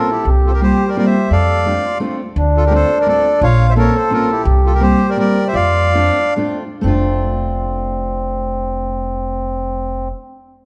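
A straight three-beat waltz pulse drives this nostalgic, whirling musette fragment, cut from a longer piece. A bright, reedy bandoneon carries the melody up front with a dry, close-miked fullness, while a mellow accordion, round and smooth, sings a second line just beneath it. Fingerpicked steel-string acoustic guitar fills in the accompaniment with a dark tone, and a woody pizzicato upright bass joins at 0.3 seconds, sitting prominently at the bottom. The harmony moves from C7sus4 to F6, then through Dm7 and Bbmadd9, with a brief break at 2.0 seconds and a slowing of the pace before the bandoneon stops at 6.3 seconds, leaving the accordion, guitar and bass to finish. A recital-hall reverb lends a lingering bloom to the dark, warm production.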